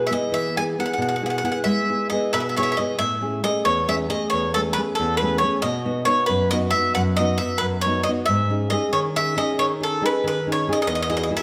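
In a straight-feeling 6/8, this sunny, lively Italian folk excerpt sets a bright, picked bowl-back mandolin with double strings on the melody beside a fingerpicked classical nylon-string guitar, both up front, with audible finger squeak on the guitar, as the chords move from E through Amaj7 and B to G#sus4 before settling on Eadd9 at 10.9 seconds, inside a wet recital hall reverb.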